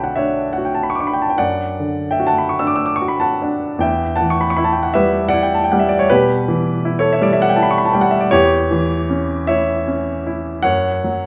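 Moving in a slow, rubato 4/4, this yearning, wistful romantic nocturne for solo piano sets a clear, polished baby grand up front in a moderate recital-hall reverb, its register spanning B1 to E6 over chords that drift from Bm to Em, then to C#dim/E at 8.3 seconds and F#5 at 10.7 seconds, all within a dark production cut from a longer piece.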